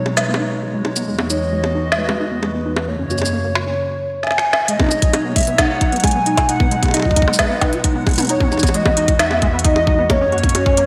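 Playful and glitchy, this IDM piece sets a warbling, nostalgic lead melody with tremolo, lush chorus and digital delay over a hollow, flute-like pad with chorus, while a rubbery, resonant acid bass plays arpeggios under a filter sweep through the opening section. An up-front organic electronic drum kit with woody snare, smooth hats, bongos, shaker and toms, treated with gated reverb, plays a fill just before a tight electronic kick drum enters at 4.8 s. The bright 1980s-style digital production sits in a lush hall reverb.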